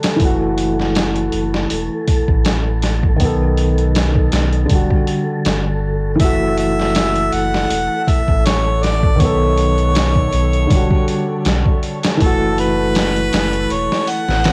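Recorded at home on cassette in a lightly reverberant room, this hypnotic, cinematic trip hop fragment moves at 80 BPM in F# phrygian over a gritty, pitched-down sampler-style drum kit with a thumpy kick and a medium-tuned snare, the whole kit compressed, tape-warm and sitting up front. A felt-muted upright piano with audible action noise and harmonic tremolo comps through F#m7, B7 and a rootless Em9, alongside a round sine sub bass and a breathy, wind-like noise texture drifting in the background. At 6.2 s a clear harmonica with light vibrato takes the solo melody, its line trailing dub echo.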